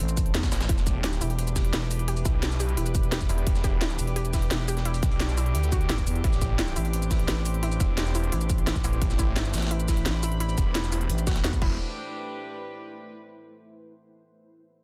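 A dense, heavily limited master with digital ambience carries this tense, aggressive stretch of dark technical drum and bass, where a snarling distorted saw bass and a thick growling FM bass sit up front over a punchy electronic kick, a drum and bass kit with cracking snare and crisp hats, and a gritty sampler-style breakbeat kit in the background, while a moody ambient pad with chorus and reverb, a lo-fi warbling pluck with delay and 12-bit grit, and a distant bowed chamber string section pump beneath, the strings carrying on alone until 13.1 s.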